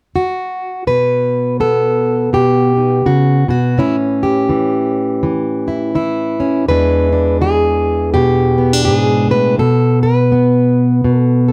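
Laid-back and soulful, this short excerpt of acoustic country blues moves at an easy 83 BPM in 4/4 with a loose swing on the eighth notes. A single fingerpicked, plugged-in steel-string acoustic guitar carries everything on its own, playing from 0.2 to 11.5 seconds across a range from E2 up to B4. Its jumbo body gives a warm, full-bodied tone, and it sits up front, where the occasional finger squeak on the strings comes through clearly. The guitar opens before any chord is established, settling on B7 at 0.9 seconds, then moves through A7 and E7 before landing on a rootless Gadd9/B at 9.6 seconds. A moderate studio reverb lends the guitar a modest sense of space, keeping the sound intimate and relaxed.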